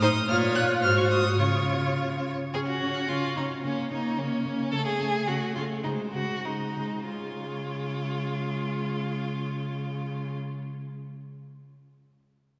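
A cheerful, lively fragment of a quick classical-period string quartet movement opens with all four bowed players together: the first violin carries a focused, vibrato-laden melody from a distance, the second violin plays an up-front inner line, the viola supplies close, warm accompaniment and the cello holds a smooth, even bass, their rubato phrasing easing into a slowdown from 4.2 to 7.1 seconds inside a reverberant church acoustic.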